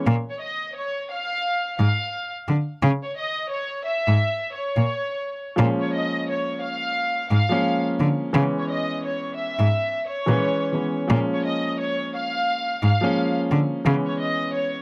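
Heard in a small room, this dark, moody boom-bap hip-hop fragment swings on a reedy, gut-string violin section that carries the melody with light vibrato and a slapback echo, while a nasal, boxy solo cello bows the bass line with portamento and a mellow baby grand piano, its action noise audible, sounds briefly at the start and returns at 5.6 seconds after the break.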